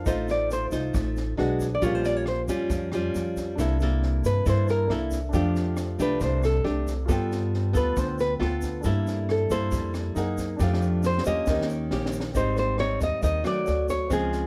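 This breezy, relaxed bossa nova excerpt moves with a straight, easy feel in four. A fingerpicked nylon-string guitar carries the melody up front as a solo through the first 12.4 seconds, its fresh strings giving a small, warm voice set in plate reverb. A second fingerpicked nylon-string guitar supplies full-bodied, deep classical accompaniment, with audible finger squeak. The pizzicato upright bass sits up front with a woody, dark tone, while a warm concert grand piano adds accompaniment with deep bass in the background. An open jazz kit in a small room plays kick drum, rim click and a high-tuned snare over a boomy kick, with a drum fill from 10.6 seconds leading into a new section at 12.4 seconds, and a grainy, bright egg shaker sits in the background.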